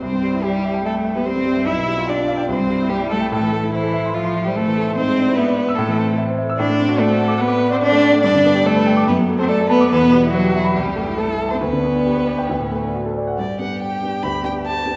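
Spirited and graceful, this quick classical-period movement for piano trio moves at 145 BPM with a rubato feel, starting in C major and shifting to G major at 6.6 s, as a warm violin sings the vibrato-rich melody with portamento and a smooth top, a clear, even cello carries the second line, and an up-front grand piano with long sustain supplies the accompaniment, all three playing throughout within a moderate scoring-stage reverb until a new section begins at 13.4 s in this excerpt from a longer piece.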